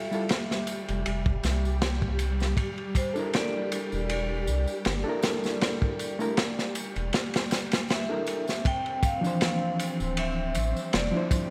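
The rhythm is a crunchy breakbeat kit at 79 BPM in 4/4, swung at 55% on the sixteenths, with a tight kick, a medium-tuned snare and dark ride cymbals sitting up front, and a close tambourine in the background. This dark, cinematic trip hop cut in D minor is taken from a longer piece. A round, deep analog bass enters at 0.9 seconds, while an overdriven reed electric piano with harmonic tremolo and tape echo plays reedy accompaniment through a combo amp over Fmaj7sus2 and a rootless C13/E. A bright, metallic vibraphone carries the melody between C5 and G5 with slow motor vibrato, sampler grit and tape echo, above veiled, con sordino studio strings holding lush chords. A very quiet, tense bowed-like drone with phaser slips in at 1.0 second. The kick drops out from 7.1 to 8.7 seconds, and the harmony moves to Dm9 as a new section begins, all framed by a moderate plate reverb, bright 1980s-style digital production and vinyl crackle.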